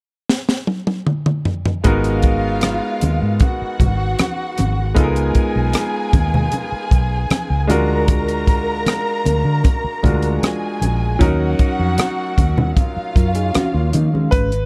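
A tight funk drum kit opens with a fill, its high-tuned snare and tight kick dry and up front, before a lush 1970s-style soul groove settles in at about 1.8 seconds with a brilliant grand piano, round, foam-muted fingered bass, ringing congas in the background and a symphonic string section bowing with vibrato and portamento. The mood is bittersweet and cinematic, moving through rich chords such as G#m9, C#13 and D#m9, while a mellow, clean electric guitar riff slips in near 13.2 seconds. The small-room production is dark and warm, and the passage is cut from a longer piece.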